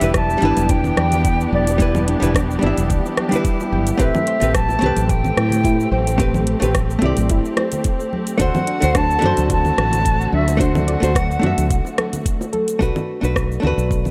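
A reedy, distant concert flute carries the melody in this relaxed sunset chillout excerpt, its tongued notes colored with vibrato and tape echo until it drops out at 12.2 seconds. Beneath it, a dark, clean hollow-body jazz guitar plays compressed, picked accompaniment, also touched with tape echo, while a muted string section, bowed con sordino, holds veiled sustained chords. A round fretless electric bass anchors the low end, and a soft pluck sound with lush chorus and tape echo threads arpeggios through the background. The groove sits at 109 BPM in 4/4 with a gentle swing on the sixteenths, driven by a knocking electronic kick and a produced R&B kit with metallic hats, rim click, shaker and congas, plus congas and bongos played by hand and tucked behind. In E minor, the harmony moves from Em7 through Am9 and D7 before arriving on Bm7 at 12.8 seconds, all within a light reverb.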